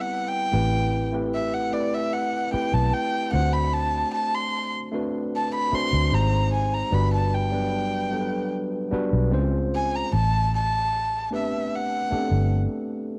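Cinematic and bittersweet, this lush 1970s-style soul passage in A dorian moves at a relaxed 75 BPM, with an intimate bowed erhu singing the melody with light vibrato, soft attack, portamento and an airy bow over a worn, slightly out-of-tune tine electric piano, both carrying a cassette-tape tint, while a dark, round, punchy foam-muted fingered electric bass enters at 0.5 seconds, all set in a small room with light reverb as the chords drift from Am9 through D7 and colourful major-seventh shifts before settling on Am11.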